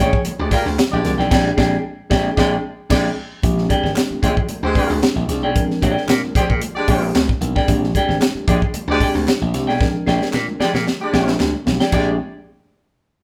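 This strutting, playful funk excerpt opens with a dark horn section, a semi-hollow electric guitar, slap bass and congas all sounding at once over a Bb13 chord, with a tight funk drum kit joining a moment later. The drums sit up front, dry and acoustic, with bright cymbals, a high-tuned snare and a tight kick, while the slap bass comes through direct and amped, punchy and bright. The guitar plays a clean, picked accompaniment with a hollow-body character, and the horns carry a second line as a distant, roomy ensemble with light vibrato and octave doubling. A very quiet group handclap enters at 0.5 seconds, crisp and close, and a mellow tine electric piano adds stabs from 1.0 seconds, sitting in the background through its built-in speakers. The band hits an accent from 1.3 to 3.4 seconds, and a drum fill runs from 9.8 to 11.9 seconds, all within a moderate large-studio reverb that gives the feel of a band playing live in one room.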